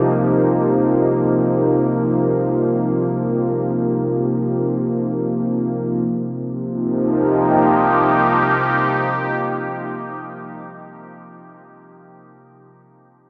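This dark ambient drone excerpt drifts in free time in C minor, tuned to A4 = 439 Hz, with a desolate, cavernous mood. An evolving, airy pad of detuned sawtooth with a noise layer and chorus holds sustained chords up front and bright, while beneath it a deep, ominous drone of triangle and sawtooth rumbles darkly in its own reverb until 10.3 seconds. The whole sits in a vast, echoing cathedral-like space, yet comes across with a small speaker sound.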